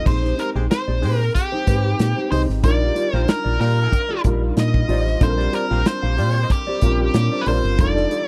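A nasal, overdriven lead guitar with a parked wah carries the melody over a punchy, round FM bass, a modern studio drum kit with bright cymbals, a boxy concert grand piano with ensemble chorus, a dark, clean electric guitar riff in the background and a distant, tight jazz horn section entering at 0.6 s, giving this breezy, upbeat excerpt of polished 1980s jazz-funk pop in Bb major at 93 BPM a dry, close studio sound.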